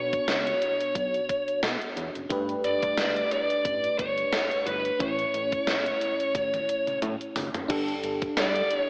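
1980s-style pop in a romantic, glossy mood, this short cut from a longer piece sets a dark, distorted bluesy lead guitar melody up front over a glassy, bell-like FM electric piano with chorus and a fat, saturated analog bass, while a thumpy gated 80s digital drum machine with a gated reverb snare plays a fill from 6.3 to 7.7 seconds, the whole mix bathed in lush hall reverb and an AM radio tone.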